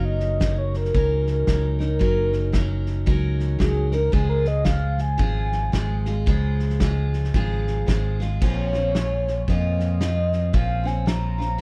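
A loose, swinging eighth-note groove in 4/4 carries this short, wistful cut from a longer acoustic folk piece played by a small band. A mellow, horn-like synth lead carries the melody, its soft attack and sustained, rounded tone colored by chorus, vibrato and a filter sweep, and it takes a gentle solo through the opening section until 8.4 seconds. Beneath it, a picked steel-string acoustic guitar supplies warm accompaniment, while a fingered electric bass sits up front with a dark, round, directly amplified sound. A loose indie drum kit enters at 0.2 seconds, heard distant and roomy in a studio space, with a punchy kick, a medium-tuned snare and crash cymbal. The harmony moves from Gb6 to Db and settles on Bbmadd9 as a new section begins, and light reverb and a dusky production give the whole a haunting glow.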